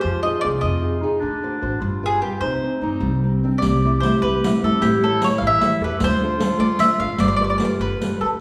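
A wet recital-hall reverb gives this Italian folk serenade the resonance of a church or concert hall. The picked mandolin carries the melody up front, its doubled strings sounding round and warm. Beneath it, a distant, roomy clarinet in classical style sings a second line. A dark, fingerpicked nylon-string guitar with audible finger squeaks supplies the accompaniment, while a woody, thumpy pizzicato upright bass anchors the 6/8 metre. At 3.6 s a riq joins with dark jingles struck by hard hands as the music moves into its second section, and the whole passage feels passionate yet wistful.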